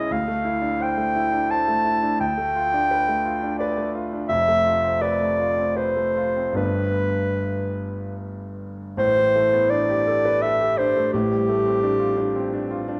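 A mellow clarinet and a clear concert grand piano begin together, the clarinet singing an up-front melody in a classical style while the piano, rich with deep bass and long sustain, carries the accompaniment through drifting extended harmonies such as Dm9, G9/D and Fmaj7#11. This hazy, mysterious impressionist duet moves in a rubato 3/4 at roughly 70-89 BPM, shifting into a new section at 9.0 s over Am11 and G9sus4/A. A moderate recital-hall reverb lends a sense of space to this fragment of a longer piece, which closes at 13.0 s.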